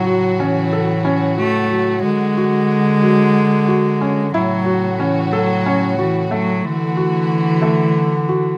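An up-front, earthy solo cello with light vibrato and an airy bow carries the second line in this hopeful, shimmering stretch of contemporary chamber music in 7/8, over a bass clarinet bass line in classical style, felt-muted upright piano arpeggios that sound soft and intimate, and a dark, smooth string section sustaining chords that alternate between A6 and D, all in a close, detailed recording with light reverb, cut from a longer piece.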